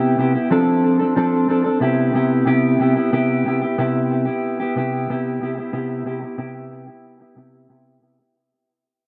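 A mellow, clean electric guitar carries this short indie pop passage alone, fingered, compressed and placed up front with a dark tone. Lush chorus, warbly pitch drift, a low-pass filter and tape echo on the guitar give it a dreamy, nostalgic haze at a relaxed 92 BPM in 4/4 with a straight feel. In C major, the harmony moves from Cmaj7 to F6 and back to Cmaj7, with the guitar spanning C3 to A4. A moderate spring reverb and an echo-heavy mix surround the part with plenty of space. From 3.1 seconds a filter sweep runs on the guitar as the sound fades out, until the fragment, cut from a longer piece, ends at 8.4 seconds.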